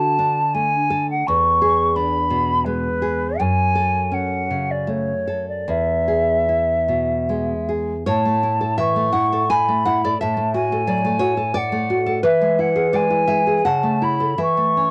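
Lyrical and serene, this romantic duo for flute and classical guitar moves in a rubato 3/4 at roughly 73-90 BPM in A major, cut from a longer piece. The silver concert flute carries the melody throughout, its tone pure and hollow with vibrato and a crisp attack, sitting up front yet carrying a faintly distant quality. Beneath it, the fingerpicked nylon-string guitar provides a full-bodied, deep classical accompaniment, its sound coloured by cassette tape. The harmony opens on a rootless Bm7/D and passes through E7 and F#m before a second section begins at 8.1 seconds on A, moving through D/A and E to settle on A/E at 14.4 seconds. A moderate booth ambience and the home cassette recording frame the pair.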